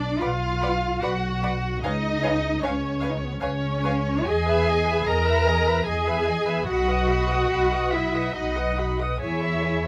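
The muted cello section sits most prominently in this tender, serene slow movement for string orchestra, carrying a dark, veiled bass line beneath the ensemble. It is joined from 0.0 s by the muted double bass section, heard up front with a soft attack and smooth top, while a muted violin section sings the melody in a distant, con sordino voice with vibrato. At 0.2 s a second violin line rises higher above it, and the violas fill in the accompaniment with close, soft-attacked bowing. In 3/4 at around 73 BPM with an uneven, rubato pulse, the harmony moves from B minor through C#7 and Emaj7, settling into B major from 4.3 s before ending on C#m/E. Captured with close, detailed microphones and little reverb, this brief excerpt, cut from a longer piece, keeps its hushed textures intimate and clear.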